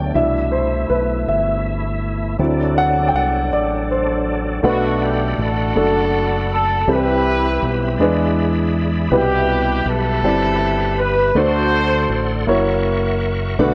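Heard in a small room with a moderate echo-chamber reverb, this hopeful, uplifting gospel excerpt in 6/8 moves at 54 BPM, with a dark, mellow grand piano accompanying up front, a reedy, bright tonewheel organ holding sustained chords through a fast rotary speaker and chorus vibrato, and a round, punchy fingered electric bass beneath, while a pop-style horn section with vibrato enters at 4.7 seconds to carry the melody over chords such as Cmaj7, D7, Bm7, E7 and F#7.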